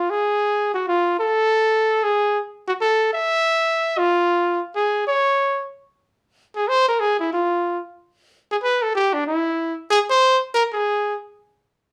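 A modest club reverb surrounds this short jazz fragment, giving a sense of the room heard from a little way back. A lone trumpet, clear and close-miked up front with a light vibrato, plays a relaxed, swinging line in three, with a new section beginning around 6.0 seconds before the horn falls silent at 11.1 seconds.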